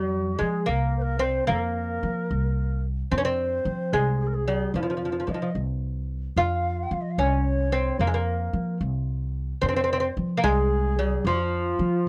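A straight 6/8 pulse carries this hypnotic, longing Persian modal ensemble piece, taken from a longer work, with all three parts playing together for its full 12 seconds. Up front, a delicate fingerpicked nylon-string lute with doubled and partly octave-doubled courses carries the melody over a woody, growly pizzicato upright bass, while a low, airy end-blown ney sits distant behind them with tongued notes and vibrato. The sound is dry and close, like a 1970s studio session.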